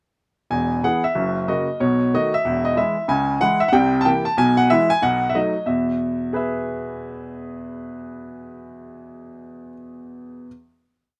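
A clear baby grand piano carries this short, complete stride jazz piece alone from 0.5 to 10.5 seconds, its open tone and long sustain sitting up front in the sound. The mood is exuberant and playful, moving at a brisk 186 BPM in 4/4 with a swung eighth-note feel in E major. A single-line melody rides above a stride bass, and the part spans from E1 up to A5. The harmony travels through E, F#7, B9, C#m, C7 and E/B before a B7 leads home. At 5.7 seconds the phrase settles onto a final E chord that rings out to the end. The recording is dry, with little reverb and an outdoor setting that leaves the piano's natural ring to carry the close.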